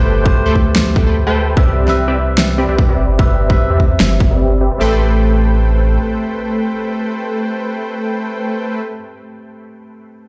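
A punchy, detuned supersaw stab carries the riff in this lush, emotional future bass excerpt at 148 BPM in a half-time feel, with a filter sweep running through its first 4.8 seconds and sidechain pumping and dub echo shaping chords that move from Am9 to Cmaj7 in A minor. Beneath it, a deep, thick sub bass with tube saturation plays until 6.0 seconds, while a barky tine electric piano through a combo amp adds accompaniment roughened by vintage 12-bit sampler grit. A hard-clipped, tape-warm kick and a fat, layered snare sit up front with studio reverb, and the whole piece carries digital ambience and the sound of a big sound system in a bare room.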